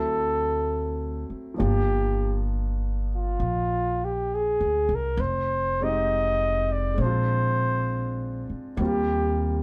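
A mellow flugelhorn carries the melody up front, its scooped notes shaping a late-night, romantic jazz ballad at 66 BPM with a gentle swing. A clear concert grand piano with audible action noise and long sustain accompanies from a quieter level, while a woody, thumpy pizzicato upright bass on gut strings anchors the harmony through chords moving from D7 to Eb6. All three play throughout this short section cut from a longer piece, heard from further back in a moderate club reverb.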